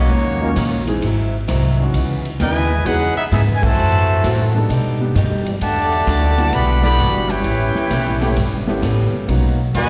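Heard live through a venue's PA with recital-hall reverb and small-room ambience, this brassy, energetic big band swing excerpt moves at 131 BPM with a 68% swing on the eighths. A clear, tight trumpet section carries the melody up front with vibrato, while a clear trombone section plays a second line in the background, and a mellow trombone ensemble holds sustained chords; slapback echo colours the trumpets, the clear trombones, a boxy picked archtop guitar with finger squeak, and a natural grand piano. Woody pizzicato upright bass sits up front, an airy, polished drum kit with punchy kick drives the swing on ride, hi-hat, snare and crash, and the whole band hits accents at 3.5 and 6.8 seconds over a chord progression that winds from D#m7 to Bmaj7.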